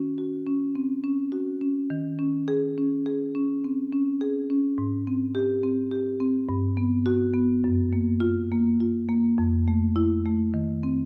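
A close-miked marimba sits up front in a moderate recital-hall reverb, its padauk bars giving a woody, full tone under medium mallets. This short contemporary classical fragment for solo marimba flows in a hypnotic, rubato 5/4 from 0.0 to 11.1 seconds, spanning F2 to Ab4. Its harmony drifts through lush seventh chords before settling on a bare Eb5.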